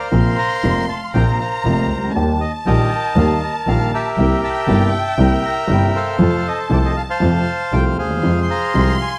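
A rubato tango in 4/4 at 118 BPM, this tense, melancholic fragment of a longer piece sets a reedy, dark bandoneon melody with slapback echo over a lush bowed violin section's second line, an intimate upright piano with audible action noise, and an up-front bowed double bass sliding with portamento, all captured dry and close in a 1970s-style studio as the chords move from Bbsus2 through Eb, C7 and F to Fm.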